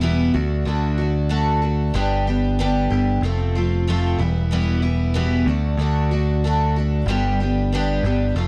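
A shimmering, octave-doubled twelve-string acoustic guitar provides the accompaniment in this jangly folk rock and heartland rock passage, its full-bodied jumbo tone up front with audible finger squeak as it picks through D, G, F, Em, D and G. A punchy, bright electric bass sits directly beside it for the whole 8.5 seconds, anchoring a steady, straight 4/4 groove at 94 BPM in G major. The sound is dry and close, a 1970s-style studio recording with little reverb and a faint mains hum, giving this short section of a longer piece a warm, intimate feel.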